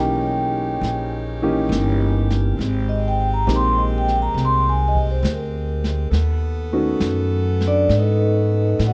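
This is a close, dry, dark-toned recording of a tender, romantic jazz ballad with a gentle swing, cut from a longer piece. A vibraphone played with soft mallets carries the melody as a solo throughout, its metallic, ringing tone colored by a slow motor vibrato and a slightly band-limited, vintage mellowness. Beneath it, a concert grand piano offers intimate accompaniment with deep bass and audible action noise, while a saxophone section holds warm sustained chords low in the mix. The pizzicato upright bass sits up front, woody and thumpy on gut strings. A brush drum kit, captured in a small room, joins at 0.8 seconds with a boomy kick and a rolled-off top. The harmony moves through D#7b9, G#maj7 and B9.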